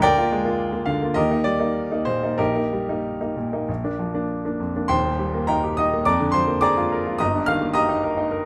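Close, detailed miking and a light reverb put a bright grand piano up front, its brilliant, short-sustained tone sounding open in this hopeful, warm fragment of a romantic character piece. The solo piano moves in a rubato 4/4 at roughly 91-109 BPM in Eb major, spanning Eb1 to F6 as the harmony circles between Eb and Bb7 chords. A new section begins at 4.9 seconds and resolves toward Eb/G by 7.2 seconds.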